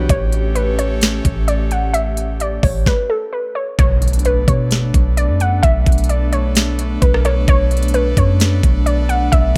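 Atmospheric cloud-rap hip hop in B minor at 130 BPM, felt in half-time, this hazy, spacious excerpt is cut from a longer piece and tuned slightly flat of standard pitch. A warbling, lo-fi pluck carries the melody from the start, its detuned tone softened by chorus, a low-pass filter and delay into something mellow and dusty. Beneath it, a breathy pad holds sustained chords with a slow attack and long release, airy and detuned with a noise layer and chorus, while a soft, round 808-style bass sits deep and dark up front. An overdriven trap kit enters at 0.1 seconds with a knocking kick, sharp snare, crisp hats and rim clicks, sounding as if re-recorded in a small room. The harmony moves from A7 to Bm9 at 3.8 seconds, where a very quiet electronic impact marks the new section, and the mix stays dry with little reverb.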